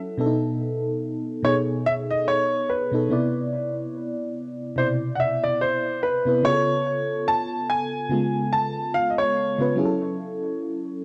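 Worn, warbling cassette tape gives this short R&B fragment a wavering pitch drift, set in a small room with a light touch of reverb. At a relaxed 72 BPM in 4/4 with a gentle sixteenth-note swing, the mood is romantic and dreamy. A mellow FM electric piano carries the accompaniment from the very start to the close at 11.0 seconds; its soft, round, dark tone has a fast attack that decays, a noise layer, and chorus and tremolo, sitting up front. Entering at 1.4 seconds, a clear concert grand piano sings the melody in its upper register through an analog delay, its natural voice tinged with a worn edge and a deep bass. The harmony drifts from B7 to Cmaj9 and C#7b13 before settling on F#m7, all within a single section cut from a longer piece.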